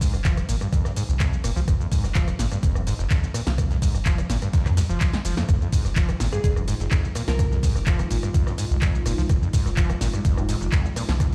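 Played through a big sound system in a bare stone room, this trippy, raw acid house excerpt at 126 BPM in F minor rides a thumpy, tape-warm kick, a punchy analog drum machine with handclaps, hats, rim click, shaker and snare, and a very quiet, pitched-up breakbeat kit under a squelchy, distorted acid bass riff with dub echo and a round sine sub bass, both pumping on an Fm7, while after a drum fill a moody, detuned pad enters at 5.5 seconds and a crystalline wavetable pluck flickers briefly from 6.3 seconds.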